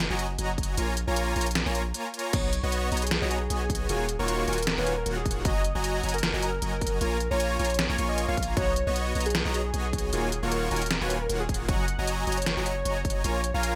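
Playful and euphoric, this future bass excerpt at 154 BPM in a half-time feel with light swing sets huge, detuned supersaw chords and a deep, sine-like 808-style bass pumping against a punchy electronic kick and a tape-warm dubstep kit of deep snare, crisp hats and crash, while a velvety synth lead with chorus, vibrato and tape echo enters at 2.3 s over lush F# major changes in a light digital ambience.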